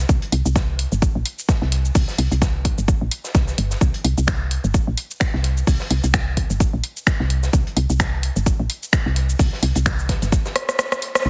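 Sparse and clinical, this minimal techno excerpt runs on a swung 4/4 groove, with a punchy, up-front electronic kick and a tape-tinged house kit of cabasa, finger snaps, hi-hat and rim click over a woody, round FM bass with sidechain pumping, while a quieter, oversized low-tuned acoustic kit of hi-hat, shaker and fat, gritty snare sits filtered and rolled-off in a bright stone room, all squeezed into a heavily compressed, radio-like sound with little reverb before a drum fill at 10.6 seconds and a band accent at 11.1 seconds.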